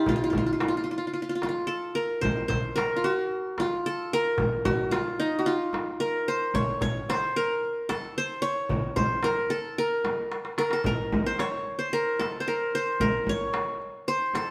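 A straight 4/4 pulse at 111 BPM carries this stately Arabic maqam ensemble piece, a short passage cut from a longer performance and tuned to A4 = 441 Hz. The qanun leads the melody up front, its plectrum-plucked triple strings sounding bright-edged and warm as they range from D4 to Db5. From 0.1 seconds a metal-shell darbuka adds crisp, vintage, band-limited percussion, while a deep, large frame drum sits distant in a roomy space alongside it. The music moves into a new section at 2.2 seconds, and a brief drum fill arrives at 10.3 seconds. The trio plays live together in one room, wrapped in a moderate stone reverb that lends the whole performance a warm, resonant air.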